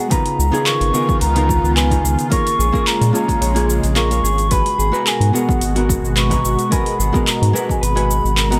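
A mellow wooden flute with vibrato and tape echo carries the melody over a clean, hollow-body jazz guitar, a lush, detuned pad coloured by chorus and phaser, and a dark, fingered electric guitar playing arpeggios in the background with its own tape echo. From 0.1 seconds a punchy, layered electronic kick and a smooth R&B kit of handclaps, metallic hi-hat and shaker join at a straight 109 BPM, and at 0.4 seconds a round, deep analog bass with tube saturation enters up front. This relaxed sunset chillout in G# dorian moves through C#13, A#m7 and G#m9 under light reverb, cut from a longer piece.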